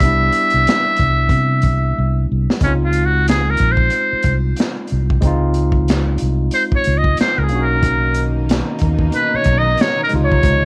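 A small-room ambience frames this smooth neo-soul R&B excerpt at 92 BPM in Db major, swung on the 16ths. A dark, crunchy breakbeat kit of punchy kick, high-tuned snare, hi-hat and handclaps sits up front beside a round, amped fingered electric bass, while a bright, barky tine electric piano supplies clean accompaniment. A buzzy, thin trumpet with a metal mute carries the melody over Cmaj9, then moves into a vintage, jazz-style solo at 2.6 seconds after a drum fill, over Dbmaj9 and Cbmaj9 chords; at 7.8 seconds a warm, intimate studio string section enters with bowed, sul tasto sustained chords and vibrato.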